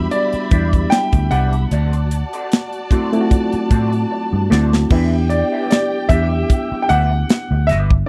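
A dry, close 1970s-style studio sound frames this bittersweet, smooth excerpt of lush soul, where an intimate grand piano with audible action noise carries the melody over a bowed string section with vibrato and portamento, a reedy, lightly overdriven electric piano that adds a fill from 2.5 to 4.9 seconds, a round, foam-muted bass, a dark, lo-fi guitar riff colored by wah and subtle chorus, and a tight, up-front funk kit with bright cymbals that drops in a fill at 4.1 seconds as the chords move from Em7 to D7 and back.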